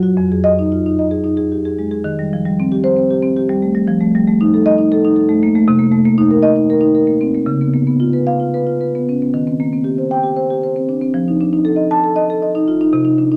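Contemporary classical music for solo marimba, this short excerpt from a longer piece has a playful, warm character. The marimba is played with medium mallets and sounds mid-forward and up front, spanning a range from F2 to A5 across its 13.4 seconds. The music moves in 7/8 at a pulse of 219-240 eighth notes per minute, handled with a rubato feel that keeps the irregular metre supple. A brief opening on Fm7 gives way at 2.1 seconds to a longer passage that moves through harmonies such as Eb6, F7, Cm7 and Db7 before settling on a plain F chord. A moderate large-studio reverb gives the instrument a gentle sense of space around it.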